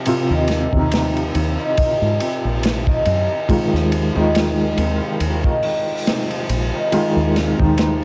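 A slow 70 BPM trip hop groove in 4/4 swings lightly on the sixteenths, driven by a crunchy, gritty breakbeat kit of kick, snare, hi-hat and ride that sits up front with dark cymbals and a rolled-off, cassette-tinged top. A round, foam-muted dub bass enters at 0.3 s with tube saturation, while a soft, intimate felt-muted upright piano with tremolo and tape echo carries the Ebm69 to Fm7 harmony. Ringing Celtic harp arpeggios with sampler grit and analog delay drift through spring reverb, giving this melancholic, dark home-cassette excerpt its hazy character.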